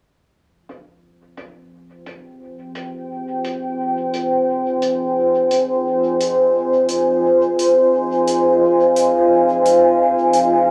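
Meditative and spacious, this ambient dub passage at 87 BPM in 4/4 with a light 16th-note swing sits on a single F minor seventh chord in F minor, tuned to A4 = 435 Hz. A softly filtered acoustic hi-hat, smooth and dark in a small room, enters at 0.7 seconds and sits well back under a filter sweep. From 2.7 seconds a deep, moody pad of detuned sawtooth unison with a sine sub octave swells in on a slow attack, carrying chorus and built-in reverb and sitting up front with a long release. A huge, wet reverb with a 6.9-second decay surrounds the whole passage, which is cut from a longer piece.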